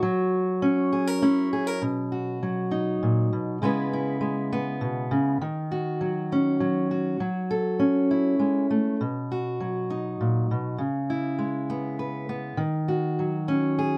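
A fingerpicked steel-string acoustic guitar plays alone and up front with a dark tone, carrying this nostalgic folk piece in three through a fragment cut from a longer work, its chords moving from F#7 toward B and C#m7 under light reverb and close, detailed miking.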